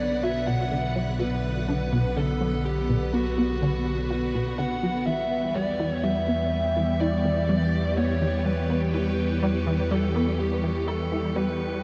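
Ambient, sequencer-driven space music at 124 BPM in 4/4, mysterious and hypnotic, moving from Bm to Em at 5.1 seconds in this short cut from a longer piece. A warbling analog drone holds the low end while a punchy, wave-folded analog bass riff with decaying filter plucks and tape echo enters at 0.2 seconds, under swirling, phased string-machine chords and a dark, fuzz-distorted lead guitar melody steeped in shimmer reverb and tape echo. Far in the background, an airy, breathy wind-like noise texture fades in, while the analog bass carries a filter sweep, all within a dark production bathed in a huge 7.5-second reverb.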